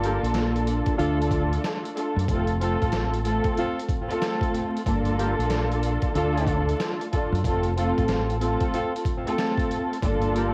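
From the first second, a dark, woody string section bows lush, vibrato-laden chords over a swung, nostalgic yet confident boom-bap hip-hop groove built from a muffled, pitched-down sampler-style drum kit with a thumpy kick, a round and punchy fingered dub bass, and warm pop-style horn stabs trailing analog delay, all wrapped in cassette tape and vinyl crackle with little reverb.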